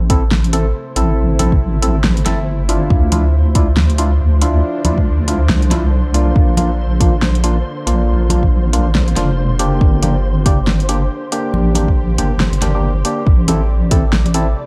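A dark, lightly reverberant mix opens this meditative, cavernous deep dubstep excerpt, its half-time swing carried by a tape-warm electronic kick and a layered kit of fat snare and metallic hi-hats in small room ambience, with close, dry congas and bongos played with hard hands entering in the background at 1.4 s. Up front, a deep soft wobble bass with chorus holds the low end, while a hollow, percussive organ stab with subtle chorus and dub echo sounds over chords that move from Am through Dmadd9, Bb and Gm back to Am. Behind them sit a tense, nasal bowed-like drone with vibrato and a flickering grainy texture, each bathed in its own reverb.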